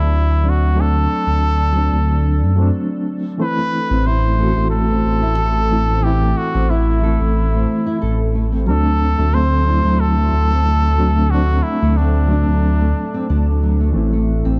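A deep, rumbling detuned saw bass sits up front in this smoky, melancholic trip hop excerpt, its beating unison tone anchoring a straight 91 BPM groove in A dorian. Above it, a cup-muted trumpet carries the melody in a soft, veiled classical style with light vibrato, its phrases trailing into dub echo until it drops out at 13.6 seconds. A reedy electric piano shimmers with fast tremolo through its built-in speakers, while a very quiet, warbling vintage pad holds moody sustained chords beneath, thickened by chorus and its own reverb. A thumb-plucked nylon-string guitar arrives at 3.6 seconds with dark arpeggios after a brief break, as the harmony moves between D7 and Am. The whole sits in a small room with a dark, warm production.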